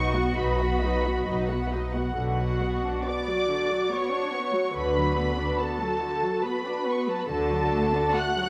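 A slow, tender romantic movement for muted string orchestra in B minor opens at once in rubato 3/4 around 64-73 BPM, with distant, soft-attacked violins carrying the lyrical melody over a lush second violin line, up-front violas, background cellos and close double basses, the veiled con sordino tone bathed in recital-hall reverb as the harmony turns from B major to B minor at 2.2 seconds before the low strings fall away at 8.0 seconds in this cut from a longer piece.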